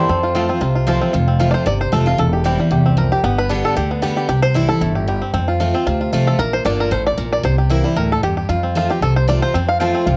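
A lively, virtuosic slice of bluegrass swings lightly at a brisk clip, cut from a longer piece and carrying the soft wear of a home cassette recording in a moderate studio room. A twangy, percussive five-string banjo, played with fingerpicks and sitting up front with a cassette-tape color, carries the melody throughout and takes a solo from 1.1 seconds to the end. In the opening moment a woody mandolin with plate reverb adds a brief melody line, while a metallic, nasal lap resonator guitar played with slide sits in the background, both stopping at 0.8 seconds. Meanwhile a second, rounder and more mellow mandolin adds stabs near the start and again just before the close. Underneath, a bright, full-bodied jumbo steel-string guitar with fresh strings and audible finger squeak picks out the accompaniment, and a dark, thumpy gut-string upright bass plucks a firm foundation up front. The chords move from F through C/E, G and C, back to F, then on to Bb and C7 before landing on F.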